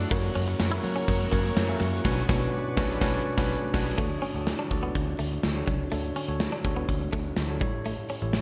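Nostalgic and glossy, this 1980s-style pop excerpt pairs a bell-like tine electric piano with a round, foam-muted fingered bass and a big rock drum kit whose punchy kick, bright cymbals, tambourine and gated reverb sit up front in a bright digital production. In the background, a double-tracked overdriven guitar with lush chorus and a thick, detuned sawtooth pad with chorus and phaser fill the first 4.0 seconds, with a band accent from 2.0 seconds. A compressed clean guitar riff with analog chorus and delay runs throughout as the chords move from F# and Bmadd9 to Dmaj7 and A7.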